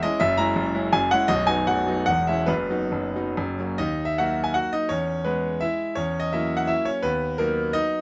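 A bright, brilliant concert grand piano, up front with deep bass and natural tone under close, detailed microphones and light reverb, plays alone through this 8-second excerpt of a rustic, graceful romantic triple-time dance in B major, its dotted rhythms and rubato moving between 126 and 188 BPM as the phrase turns toward D#m at 3.8 seconds and settles on B/D# at 7.0 seconds.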